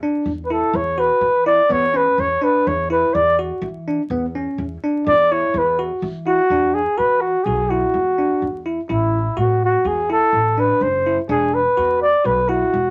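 Framed by light reverb and a haze of vinyl crackle, this driving, intricate progressive band piece in 5/4 at 125 BPM puts a breathy, whispered flugelhorn up front, its vibrato and scooped notes carrying the melody as a solo through the first 6.5 seconds, over bright, bell-like tine electric piano arpeggios and a woody, thumpy pizzicato upright bass on gut strings, all moving in E mixolydian through suspended and open-fifth chords in a clip cut from a longer piece.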